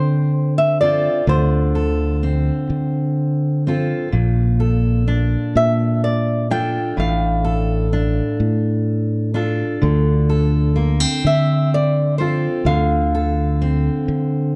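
A flamenco guitar with slapback echo sings a heartfelt, nostalgic melody over a full-bodied fingerpicked steel-string acoustic guitar with audible finger squeak and a direct, up-front fingered electric bass in this slow 6/8 acoustic folk-pop ballad at 42 BPM, moving through Dm7, Bbmaj7 and F6/A in a dark, warm production bathed in concert hall reverb, cut from a longer piece.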